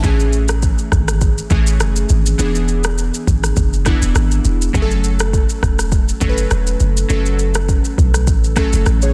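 Afrobeats with a romantic, breezy mood, this short excerpt runs just over nine seconds, cut from a longer piece, with all three parts playing throughout. A deep, boomy 808-style bass sits up front, its sine tone carrying a noise layer, a fast attack and a mellow decay. The electronic afro-pop drum kit, also up front, lays down a deep kick with rim clicks and shaker over a gently swung sixteenth-note feel. Glassy digital keys sit further back in the mix, airy and bright, with chorus and a filter sweep shaping their decaying chords as the harmony moves from Amaj7 to E7 and then F#m. The sound is dry and close, with a dense, heavily limited modern master.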